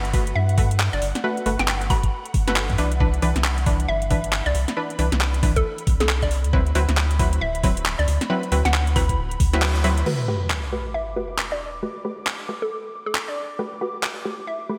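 UK garage in a two-step style, this bouncy, sunny excerpt runs at 136 BPM in G major with a swung sixteenth-note feel, moving through Gmaj9, Cmaj9 and D13 before returning to Gmaj9. A knocking electronic kick and a garage kit of cracking snare, handclaps, metallic hi-hats and crash, treated with gated reverb, drive the groove beneath a rubbery square-wave bass that sits up front until 10.0 seconds. Punchy, detuned chord stabs colored by chorus, cassette tape and digital delay punctuate the harmony, while a hollow square pluck carries the melody with chorus and delay of its own. High above, an ethereal, airy pad holds sustained chords in the background, pumping with sidechain and wrapped in ensemble chorus and its own reverb. At 9.6 seconds the band hits an accent as the kick drops out, then from 10.1 seconds a sub drop lands as an impact and a filter sweep moves across the pad, all set in a lush hall reverb with bright 1980s-style digital production.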